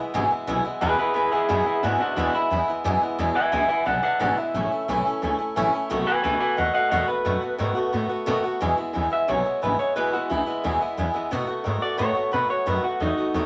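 A brisk straight 4/4 at 177 BPM drives this rollicking, retro rockabilly excerpt in E major, cut from a longer piece. A picked swing-style acoustic guitar opens at 0.0 s with a boxy, old-strings tone, and an upright bass joins at 0.1 s with a thumpy, gut-string pizzicato sound. At 0.8 s an electric guitar through a small old amp takes the melody, twangy and slightly broken-up, sitting up front above the rhythm section. The harmony moves from E to A and B7, then returns to E and B7 as the music shifts into a new section at 8.6 s. Moderate studio reverb gives the trio a natural sense of room.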